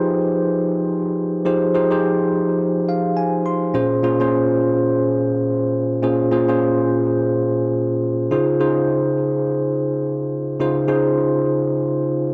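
A homespun cassette recording, tuned slightly sharp at A4 = 441 Hz, gives this short R&B fragment its tape character, with a moderate spring reverb lending the room a springy halo. A bell-like tine electric piano plays alone throughout, its clean, direct tone sitting up front and colored by cassette tape and an analog delay. The mood is slick and confident as the piano moves through Fm7, then Bbm9, and spans from Bb2 up to C6. A brief fill at 2.6 s adds a flourish before the harmony shifts. At 8.3 s the music moves into a new section on Dbmaj7, where this cut from a longer piece stops at 12.3 s.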